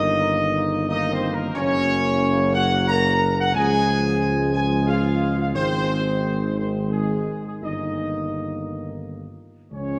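Bathed in a wet concert-hall reverb, this brief, solemn and triumphant classical fanfare at 88 BPM in an unevenly felt 3/4 sets a tight, up-front trumpet section carrying the melody over soft-attack French horns and a lightly vibrato-tinged trombone section holding sustained chords in the background, all anchored by a smooth-topped tuba bass, as the harmony moves from Eb/G through Gb, Db and Ab before returning to Eb/G at 7.6 seconds.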